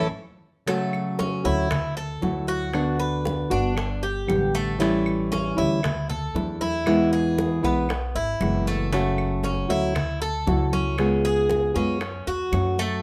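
A nylon-string guitar sits up front, thumb-plucked and classical in tone, carrying the accompaniment through this relaxed, danceable stretch of Cuban son and guajira at 116 BPM in a straight 4/4. Beside it, the Cuban tres plays warm arpeggios on metallic double strings, some doubled at the octave, while a gut-strung upright bass thumps low and woody underneath. After a band accent and drum fill in the opening 0.7 seconds, congas with a thick, hard-hit skin and tight, high-tuned bongos enter in the background, with woody claves joining at 0.9 seconds. The harmony moves through F#m, Dadd9, Bm/D, Gadd9, A7 and Dsus2 before settling on E and returning by way of C#7 to F#m. Light reverb gives the acoustic ensemble a gentle sense of space in this brief cut from a longer piece.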